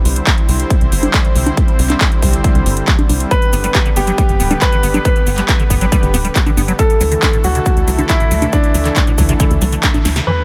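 Soaring and bittersweet, this uplifting trance passage at 138 BPM, cut from a longer piece, sets a lush, detuned supersaw pad on sustained chords and a tight, dark sawtooth sequencer bass pumping under a punchy, up-front electronic kick and a big-room kit of congas, handclaps, metallic hats, shaker and snare, before a warm concert grand piano with digital delay and a squelchy, resonant acid bass arpeggio with chorus enter at 3.3 seconds, passing through an accent, a drum fill and an electronic sub drop impact at 10.3 seconds.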